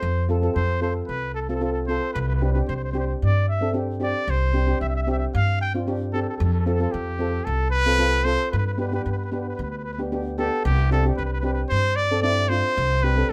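A bouncy, festive calypso fragment at 113 BPM opens with a warm, up-front solo trumpet singing a classical-style melody with light vibrato, over a shimmering double-seconds steel pan played softly with rubber sticks and a woody, thumpy pizzicato upright bass on gut strings, all moving through F, Csus2 and G in a light reverb.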